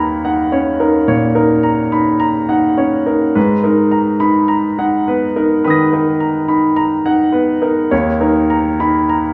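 Freely rubato in 4/4, this brief cut from a longer impressionist solo piano piece drifts with a hazy, nocturnal mood. A clear concert grand, natural and up front with a deep bass, spans from D#2 to A#6, moving from D#m7 to G#m9 at 3.4 seconds before a final chord change near 7.9 seconds. The piano sits in a moderate recital hall reverb blended with a small room ambience.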